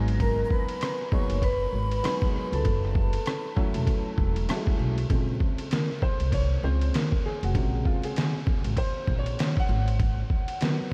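An overdriven, sampler-style trip hop drum kit sits up front in this mellow, nocturnal jazz-hop piece, its compressed, pitched-down sound giving a muffled, thumpy kick, a medium-tuned snare, hi-hat, ride cymbal and rim click at 98 BPM in 4/4 with a lazy 16th-note swing. A woody pizzicato upright bass with steel strings sits equally close in the mix, while a smooth, vintage upright piano with long sustain and analog chorus plays accompaniment over chords moving from Abm9 to Gbm9. In the opening phrase, a dry, close-miked vibraphone with medium mallets carries the melody, metallic and ringing with slow motor vibrato and tape echo, joined by a soft, breathy metal flute whose lifted highs and unsteady vibrato float quietly above. Both of those voices fall away by 4.5 seconds as the piano plays a fill, then from 5.1 seconds the piano takes a solo over Bbm9, returning to Abm9 near the close. Light reverb, a small-room ambience and a bed of vinyl crackle wrap this excerpt, which is cut from a longer piece, in a late-night haze.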